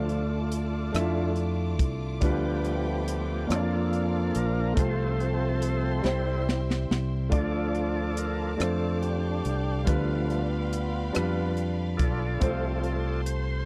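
A dry, close 1970s-style studio sound frames this slow, soulful and reverent gospel excerpt in 6/8 at 47 BPM, where a thick, lightly overdriven tonewheel organ with slow rotary speaker takes the solo over a clear grand piano with audible action noise, lush bowed strings, a round fingered electric bass and a crisp fusion drum kit with a high-tuned snare and punchy kick that plays a fill from 6.0 to 7.3 seconds, moving through Dm, G7/D, Bb/F, F/C and C.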